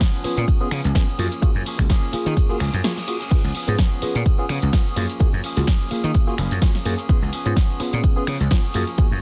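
A dense, heavily limited and nearly dry mix carries this funky, joyful excerpt of filtered disco house at 127 BPM with a light 16th-note swing in Db mixolydian, where a punchy, tape-warm electronic kick sits up front beside a growly, overdriven slap bass, a dry analog drum machine supplies snare, hi-hat, ride, crash, shaker and finger snaps, a tambourine sits in the background, a twangy, picked electric guitar riff runs through an envelope filter, and a bright tine electric piano with phaser plays chords moving between Db7 and Gbmaj9, while the guitar, piano, bass and tambourine all pump to the sidechain and a reverse cymbal leads into a short break at 2.8 seconds.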